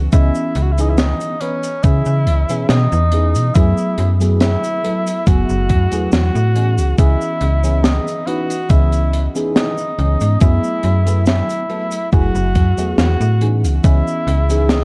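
A dark, cassette-tape haze with light small-room reverb wraps this melancholic, woozy vaporwave excerpt, where a mellow, vibrato-laden tenor saxophone sings through tape echo over a lush, dreamy FM electric piano with a soft pad layer and phaser, a snappy, metallic slap-like FM bass and a thumpy electronic kick sit up front, and a crisp fusion kit adds airy hi-hat, cabasa and a high-tuned snare as the chords drift between C#m9 and F#m11.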